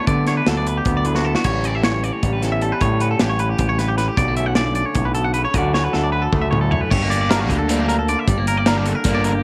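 Playful and bright, this short cut of math rock and midwest emo moves in 7/8 with a straight feel. A clean, twangy, compressed guitar with spring reverb plays high arpeggios up front, while a second guitar through a small old amp adds a lo-fi, slightly broken-up accompaniment beneath it. A growling picked bass, overdriven and sitting forward, anchors the low end. An acoustic studio kit with a medium-tuned snare and tight kick keeps time and drops in drum fills. The harmony moves through D6, A9, Bm9 and Dmaj7 before a new section at 6.9 seconds turns to Gmadd9, and an overdriven, double-tracked semi-hollow guitar enters with a warm riff at 7.3 seconds, the whole set in a small room reverb.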